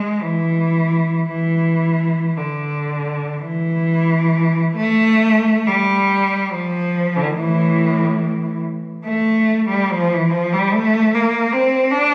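Yearning and lonely, this brief classical excerpt for unaccompanied cello moves freely in a rubato three-beat lilt, a single bowed player carrying the line alone from start to finish. The cello sounds rich and up front yet oddly distant, its expressive vibrato and portamento ranging from A2 up to D4 as the opening phrase returns after 4.8 seconds. A moderate scoring-stage reverb blends with the echo of a club-like room, since the performance was captured on a phone, lending the sound a hazy, ambient halo.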